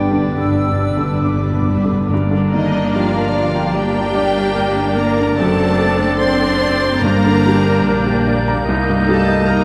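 A very quiet timpani fill on calf heads opens this passionate, lyrical romantic movement, as a clear, intimate baby grand piano, its action noise audible, carries the rubato melody with a lush, vibrato-rich violin section in a vast, echoing cathedral space. Alongside them sit second lines from a pure, tongued flute group, a bright oboe in the background, a close-miked clarinet and a soft-attack second violin section, while a roomy bassoon, a portamento-inflected viola section, a vintage-sounding French horn section holding sustained chords, dark, woody cellos and distant double basses fill out the accompaniment and bass. The harmony turns from G major to G minor at 2.1 seconds and settles on Cm7, with the timpani falling silent at 8.2 seconds in this excerpt cut from a longer piece.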